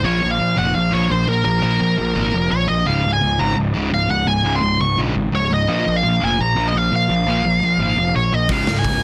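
Dry, dense and heavily limited, this rowdy, energetic punk rock clip puts an up-front, high-gain lead guitar melody over a sludgy, overdriven riff guitar and a growly fuzz bass, with a very quiet, scooped second distorted guitar and a gritty, punchy garage drum kit in a bright stone room joining only at 8.5 s.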